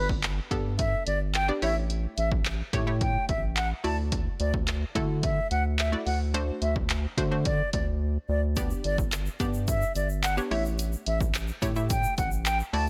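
A pure, expressive concert flute with vibrato opens this summery, euphoric dance-pop piece in D major at 108 BPM, over a bright, detuned analog pluck with chorus, a round, deep analog bass pumping with sidechain like the flute, and a punchy analog drum machine of kick, hi-hat and handclaps re-recorded in a large room, all in a dry mix with a faint mains hum, until a brief silent gap at 8.0 seconds, after which a grainy egg shaker joins in the background at 8.6 seconds.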